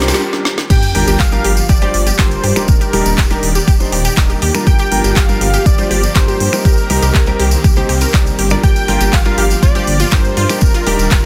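Progressive house at 121 BPM in G minor, dreamy and emotional, where a brief drum fill, swell and stop give way at 0.7 s to a drop led by an up-front deep electronic kick. A rumbling detuned saw bass, a lush pumping pluck arpeggio and clear grand piano stabs, both with delay, sit with a very quiet slow-attack supersaw pad and a thick, bold unison lead melody with vibrato and digital delay. A woody-snared deep house kit with finger snaps, handclaps and smooth pumping hats plays alongside a jingly tambourine, while background risers and a sub drop end by 2.7 s, all under light reverb in a dense, heavily limited master over Gm7 and Ebmaj7 chords.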